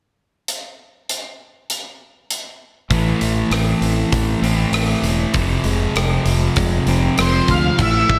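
This brooding, dark quiet-loud alternative rock piece, cut from a longer work, opens with a big, tight-kicked acoustic drum kit playing crash, hi-hat, kick and rim click, before a double-tracked fuzz guitar riff, twangy, slightly broken-up guitar arpeggios with slapback and tape echo, and a bright, growling overdriven fingered bass arrive together at 2.9 s over A minor shifting to F minor, with a dark octave-fuzz lead melody cutting in at 7.2 s, all set in a lush hall reverb for a big arena sound.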